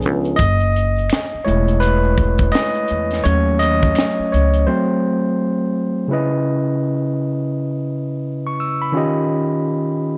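Set in a small, lightly reverberant room, this sultry, soulful neo-soul R&B fragment at 84 BPM in C# minor, with a swung sixteenth-note feel, is led by a gritty, barky overdriven tine electric piano played through a combo amp, which takes a solo over a woody pizzicato upright bass, a tight funk kit with a high-tuned snare and a faint tube shaker with finger snaps, until the rhythm section drops out at 4.7 s and the piano carries on alone through the break and into a new section at 6.1 s, moving from F#m9 toward a closing D#9.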